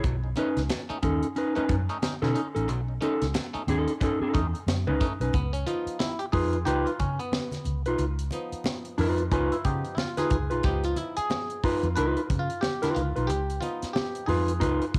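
Playful and energetic, this funk excerpt moves at 90 BPM in 4/4 with a 16th-note swing, sitting in Db mixolydian. A mellow electric guitar plays up-front accompaniment with a dark, clean, fingered tone colored by cassette tape, while a vintage muted fingered electric bass anchors the low end with a round, foam-muted, amped sound. A crisp fusion drum kit brings an airy, polished feel with a high-tuned snare and punchy kick, and very quiet congas add hard-handed, thin-skinned accents. The bright clav delivers stringy, twangy stabs through a combo amp with phaser and cassette tape, then steps forward for a solo from 5.3 seconds to the end as the harmony shifts from Cb9 to Db9. The whole piece carries the intimate character of a home cassette recording in a small room.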